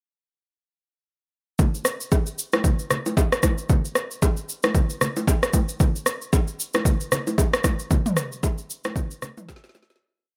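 An up-front deep house drum kit with a punchy kick and a woody snare, re-recorded in a small room, carries this deep, hypnotic amapiano piece in swung 4/4 from 1.6 seconds, its steady shaker, soft kick and syncopated rim playing alongside bright, vintage, band-limited congas and bongos set lower in a digital ambience, before a fade-out from 7.9 seconds closes on a drum fill at 9.5 seconds.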